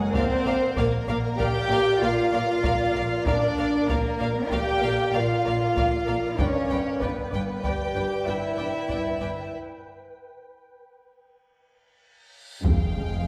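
Up front, a warm cello section bowing sul tasto carries the bass of this tense, mysterious suspense film cue in 5/4, with a dark cello riff and rich double basses beneath it, a pure, floating violin section playing a second line over a soft background violin melody and woody violas, a grainy, flickering granular texture and mellow, distant French horns holding sustained chords, and heavy-stick taiko drums in a live room, until a break at 9.5 s leads to a huge, bright reverse cymbal at 12.5 s and an impact at 12.6 s, the whole cue set in a wet scoring-stage reverb.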